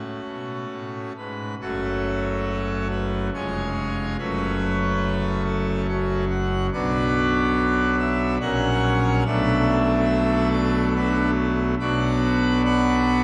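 A wet church reverb with a 3.8-second decay surrounds this brief fragment, cut from a longer classical piece, while the organ itself sits up front. It is a dark, solemn chorale-style passage for solo pipe organ on full registration with mixtures, voiced in a romantic manner and sounding majestic and brilliant across a span from E#1 to F#5. The music moves in 3/4 at around 71 BPM with a rubato feel, in F# minor and tuned to A4 = 444 Hz. A short opening gesture gives way at 1.6 s to the main body of the passage, which runs until 13.2 s. The harmony moves from F#m through C#/E# back to F#m, then turns toward Bm, passing through F#/A# and Bm7 before settling on Bm.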